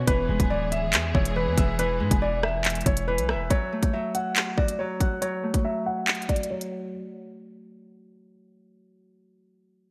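Drill hip hop at 140 BPM in a half-time feel, this dark, cold excerpt in F# minor pairs a dark, mellow grand piano melody, touched with audible action noise, low-pass filtering and digital delay, with a bright, ringing fingerpicked Celtic harp that carries on until 8.8 seconds. Lush bowed strings with vibrato and a punchy, heavy 808-style bass with a noise layer and fast attack both drop out at 3.5 seconds, as the chords move from E to F#m and a filter sweep begins. Up front sits the electronic drill kit of hard-clipped kick, crisp hats, handclaps and rim clicks with gated reverb, all within a bright 1980s-style digital production with light reverb.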